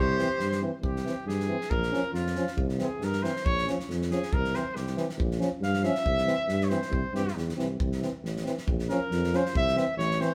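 A moderate stone-room reverb surrounds this short cut from a longer Balkan brass band piece, played live by the group in one room. The mood is fiery and virtuosic at 138 BPM in 2/4, with a light swing on the sixteenths and a C phrygian dominant colour as the harmony moves between C and Bb minor. Up front, a clear, punchy trumpet carries the melody with vibrato and takes a solo from 0.8 s to the end, while a mellow tuba holds the bass just as prominently. A smooth-topped alto saxophone sounds a brief second line only during the opening 0.6 s. In the background, a soft-attack French horn and a distant, roomy euphonium supply classical-style accompaniment. An airy acoustic drum kit with a fat snare and kick drum drives the rhythm.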